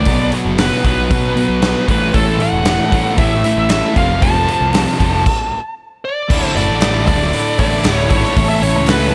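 Driving and confident, this 116 BPM classic rock excerpt in straight 4/4 puts a warm, distorted, bluesy lead guitar melody and a gated 80s drum kit with bright cymbals and a tight kick up front, over a bright distorted riff guitar, a sludgy overdriven second riff guitar and a dark, round fuzz-picked bass, while a very quiet slow-rotary tonewheel organ enters at 1.8 seconds, a woody, shimmering, octave-doubled twelve-string acoustic at 2.1 seconds and crisp, dry group handclaps at 2.7 seconds, with a stop at 5.3 seconds before a new section moves from Dsus2 back to A.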